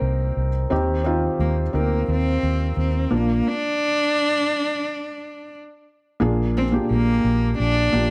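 Light reverb and a small-room ambience frame this short, anthemic and uplifting piano-driven pop passage, cut from a longer piece. A close, expressive bowed cello carries the melody with vibrato, portamento and a soft attack, over a mellow, intimate felt-muted upright piano with audible action noise and a dark, round, foam-muted electric bass, all three up front. The harmony moves from Cm7 through Eb6 to Bb, halts in a stop from 3.5 to 6.2 seconds, then shifts to Bb7 as a new section begins.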